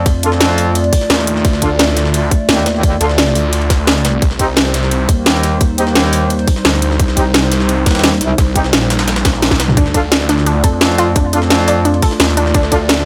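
Futuristic and dark, this 173 BPM technical drum and bass cut in D phrygian drives an overdriven, up-front electronic kick and a kit with a cracking snare and bright hats over a gritty, pitched-up jungle sampler-style kit in the background, while a snarling distorted saw bass and a metallic wobble bass growl beneath a deep, moody analog pad with lush chorus and sidechain pumping, vintage brass ensemble stabs drift through tape echo, and a warbly, lo-fi pluck arpeggio arrives at 9.8 seconds just after a drum fill.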